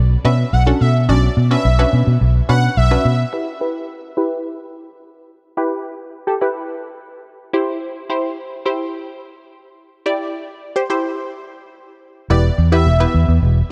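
A dark, lightly reverberant dance-pop excerpt, bittersweet yet energetic, opens on a drop where a round, foam-muted vintage electric bass punches up front beneath a soft, airy lead coloured by chorus, delay and vibrato, moving from Bmadd9 to Em. From 3.3 seconds the bass and lead fall away, leaving a lush, detuned sawtooth unison pluck under a low-pass filter sweep while the chords move from Em to C. At 12.3 seconds the drop returns with the bass and dreamy lead back over Em before the cut.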